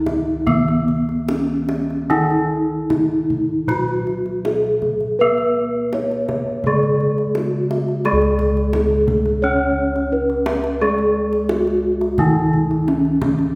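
Javanese gamelan in Db slendro at a serene, unhurried 74-87 BPM, this shimmering fragment of a longer piece sets a mellow, padded-mallet bronze metallophone melody over a brighter, airy, up-front horn-mallet metallophone accompaniment, both ringing with the beating shimmer of paired tuning, while round, boxy bossed gongs carry the bass and a tight, soft-handed kendang keeps time, all heard from further back on a reverberant scoring stage, with a new section arriving at 8.1 seconds.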